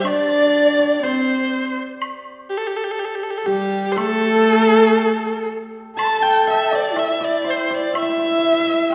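This Chinese traditional chamber piece moves at a slow 61 BPM in 2/4 with a straight feel, set in the A yu mode, and its mood is wistful and graceful. Up front, a single erhu carries the melody with a rich, smooth, even bowed tone, shaped by vibrato and portamento. Also up front, a horsehead fiddle plays a lower second line, its horsehair strings giving an earthy, husky, biting sound with light vibrato and sliding portamento. Further back, an end-blown bamboo xiao adds an airy, reedy line with a soft attack, while a hammered dulcimer rings and shimmers, and a close, dry woodblock keeps time from the background. Every part plays from the first moment to the end at 8.9 seconds, with a new section arriving at 6.0 seconds, and the ensemble is heard from further back in a recital hall with a lush, reverberant tail. The recording is cut from a longer piece.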